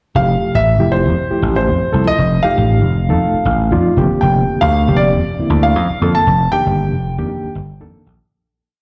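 A punchy, amped slap bass sits up front with a syncopated riff, driving this soaring, bright electric jazz fusion piece with a light swing. Over it, an intimate concert grand piano with audible action noise and deep bass sings a motif-based melody with slapback echo, while a reedy, gritty overdriven electric piano pushed through a combo amp adds syncopated drop-2 chord stabs with fast tremolo and slapback echo. The electric piano steps out with a fill at 3.2 seconds before the whole piece fades out from 6.3 seconds, all heard as a live gig through the venue's PA with recital hall reverb and small room ambience.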